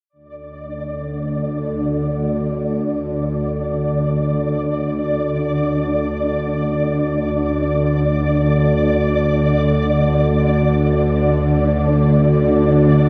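A flickering, grainy high texture on D5 emerges from a vast, echoing cathedral space at 0.3 s, joined at 0.6 s by a tense, string-like bowed drone spanning D2 to D3 with detuned, ring-modulated edges and vibrato, the two held tones sustaining in free time with a desolate, ominous dark ambient mood while shimmer reverb haloes the texture.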